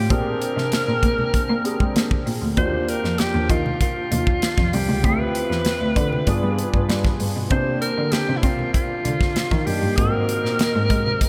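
Upbeat and glossy, this 97 BPM slice of polished 1980s jazz-funk pop in Bb major features an up-front, breathy alto saxophone melody with vibrato, subtone and scooped notes over chorused grand piano chords with a deep bass, while a reedy, bowed gut-string cello carries the bass line. From 0.1 s, an airy acoustic drum kit with a tight kick, medium-tuned snare and hi-hat plays in 4/4 alongside very quiet, ringing low-tuned congas, and the saxophone trails a diffuse ambient delay. Lush chords such as Bb13, Ebmaj9 and G7b9 float in a dreamy mix soaked in moderate cathedral reverb.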